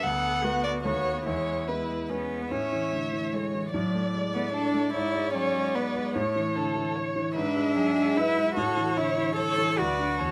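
Violin, viola, cello and concert grand piano sound together from the first moment of this graceful, spirited classical-period movement for piano quartet in triple time, cut from a longer piece. The rich, smooth violin carries the melody with vibrato from a slightly distant place, while the intimate, up-front cello plays a second line with an airy, soft-attacked sul tasto tone. Beneath them, the focused, vibrato-laden viola and a clear, vintage-sounding piano with deep bass and short sustain fill out the accompaniment, captured by close, detailed microphones with light reverb, and at 2.5 seconds the music moves into a new section that turns mostly around A and E7/G# harmonies.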